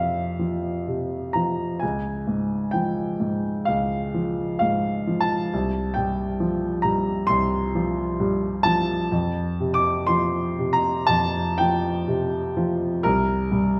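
A clear, open concert grand piano with a deep bass sits up front in this hazy, dreamy impressionist solo piece, drifting in rubato 4/4 at roughly 59-70 BPM through F5, Db and Csus4 harmonies in a tuning of A4 = 438 Hz, spanning C2 to D6 and bathed in a wet recital hall reverb across this 13.8-second fragment of a longer work.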